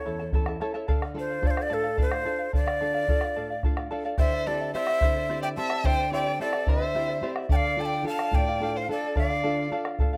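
Andean folk in a straight 6/8 with a wistful, melancholic mood, led by an up-front, breathy wooden quena with chiff, vibrato and a plate reverb and tape echo over a shimmering fingerpicked charango, a bright flamenco guitar on fresh strings and a round, up-front bombo, while a focused bowed violin joins with a smooth second line at 4.2 seconds in this fragment cut from a longer piece.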